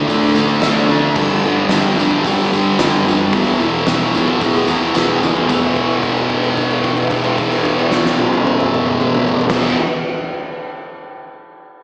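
A straight 4/4 pulse at 111 BPM drives this raw, swaggering garage rock fragment, cut from a longer piece and played by a small band. Up front, a thick, double-tracked fuzz guitar picks out a distorted riff with slapback echo, moving through D5, G5 and E5 power chords. Beside it, an oversized low-tuned acoustic drum kit pounds with a punchy kick, fat snare, hi-hat, toms and crash cymbal, its gritty, saturated sound ringing in a bright stone room that pumps. Tucked in the background, a hollow-body short-scale electric bass adds a dark, round, amped low end with tube saturation, while a jingly, vintage-sounding tambourine sits very quietly in the mix until it stops at 5.7 seconds. A drum fill at 5.0 seconds leads into the second section, where a held note sustains from 5.5 to 9.5 seconds. The whole performance comes across like a live gig heard through the venue's PA, with recital hall reverb and a small speaker character.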